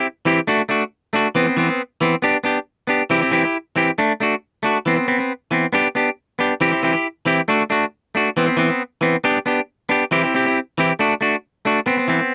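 A bright, twangy clean electric guitar plays alone and up front for the full 12.3 seconds of this joyful, carefree highlife passage at 137 BPM in a straight 4/4, picking between E3 and G4 over a cycling D, Cmaj7/E, G and C progression, captured in a dry, close 1970s-style studio sound with light reverb and cut from a longer piece.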